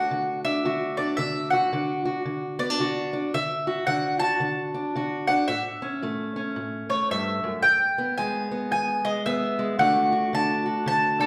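A round, double-strung mandolin carries the melody up front in this rollicking, gritty snippet of acoustic country blues, swinging in 4/4 over chords that move from D to A at 5.5 seconds, then E and back to D. Beneath it, a fingerpicked parlour guitar with old strings gives a dark, woody, boxy accompaniment. Both play throughout, set in the lingering reverb of a recital hall.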